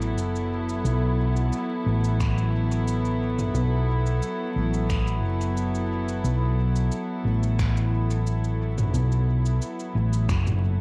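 Dark, nasal chamber strings with a reedy gut-string tone hold a sustained B7sus4/F# chord up front beside a round, hollow-body fingered electric bass, while a softer electronic kit of cabasa, finger snaps and toms sits in a roomy distance and an overdriven, muffled, thumpy sampler kick enters in the background at 2.2 s, giving this deep, hazy 89 BPM ambient dub fragment a dry home-cassette sound dusted with vinyl crackle.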